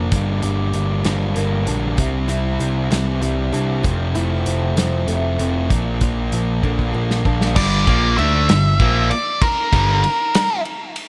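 A boxy old acoustic guitar picks tape-echoed arpeggios in the background, finger squeak audible, while a sludgy overdriven guitar riff sits up front over a growly, punchy overdriven bass and a loose indie drum kit with a medium-tuned snare. After a drum fill, this dark, cathartic quiet-loud alternative rock piece in 6/8 shifts at 7.6 seconds as a fuzzy octave lead guitar carries the melody through distortion and tape echo, and a bright overdriven guitar riff joins until 10.0 seconds. The parts share a small room with light reverb, and the recording is cut from a longer piece.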